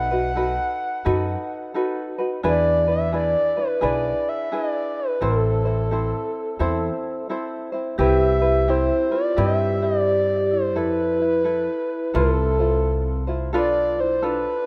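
Languid and dreamy, this swung Hawaiian piece drifts along on a breathy, flute-like synth lead, soft and warbling with chorus, vibrato and delay, carried up front over a bright, thumb-plucked tenor ukulele and a woody pizzicato upright bass. At 8.0 s the harmony brightens as a metallic, ringing vibraphone with medium mallets and a slow motor vibrato joins as a second line, its tone vintage and band-limited and touched with delay. A lush hall reverb surrounds the rough home-demo mix, and the passage is cut from a longer piece.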